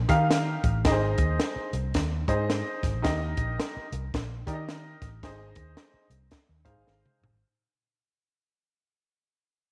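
Set in a moderate echo-chamber reverb, this joyful, danceable slice of uptempo 1960s-style soul swings at 110 BPM in 4/4 and fades out across its full length, cut from a longer piece. A dark, round, foam-muted electric bass and a compact, dry cocktail drum kit with a high-tuned snare and punchy kick drive the groove. A woody, slightly detuned upright piano provides accompaniment over the Eb and Ab chords, and a drum fill arrives at 6.9 seconds.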